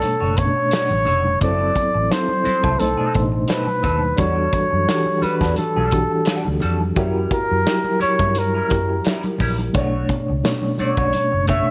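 Silky and smooth, this lush 1970s-style soul excerpt glides at 86 BPM in B minor with a gentle 16th-note swing, as a close-miked flugelhorn carries the jazz-style melody up front with soft attacks, scooped notes and light vibrato. A mellow, reedy electric piano with fast tremolo and a dark, round, foam-muted fingered bass fill out rich chords from Bm9 through F#m7b5, B7b9, Em11 and F#7b9, while a bright, twangy picked electric guitar plays a slightly broken-up wah riff. A punchy, up-front modern studio drum kit with a medium-tuned snare pumps along, joined by very quiet, damped congas played with soft hands, all in light reverb and small room ambience.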